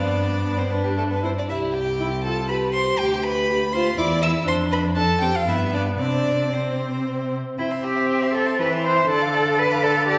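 An up-front, expressive cello with portamento anchors this cheerful, graceful classical-period movement for string quartet in 3/4 with a rubato feel, beneath a clear, close first violin carrying the melody, a rich second violin sliding through its own line, and a smooth, even, distant viola accompaniment, all four bowed with vibrato in a wet scoring-stage reverb, in a passage cut from a longer piece.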